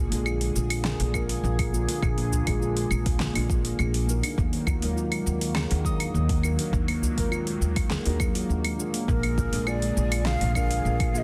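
Hypnotic and earthy, this organic downtempo excerpt moves at 102 BPM in a straight 4/4, with a smooth, detuned analog pad holding sustained chords over Bb7 and Ebm while a mellow steel tongue drum rings out arpeggios with tape echo. A woody pizzicato upright bass with tube saturation and sidechain pumping anchors the low end beside dark, muted felt-like synth keys, and a layered deep house kit with a fat snare, metallic hats, cabasa and claves sits atop a deep electronic kick that enters at 1.1 seconds, joined by a very quiet, close udu from 2.3 seconds. A breathy end-blown ney with vibrato and a crisp attack brings in the melody at 9.1 seconds, all set in a small room with light reverb and a dense, heavily limited master.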